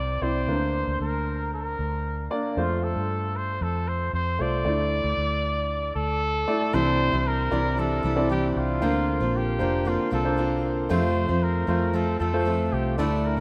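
A rough home-demo mix bathed in a lush hall reverb frames this earnest, dramatic piano-driven pop piece in a straight 4/4. A woody upright piano with long sustain carries the accompaniment under an up-front trumpet melody with light vibrato, while a dark, foam-muted electric bass gives a round, punchy low end. At 6.7 s a bright, full-bodied fingerpicked steel-string acoustic guitar joins with a riff as the harmony moves through Cadd9, Bbadd9 and F.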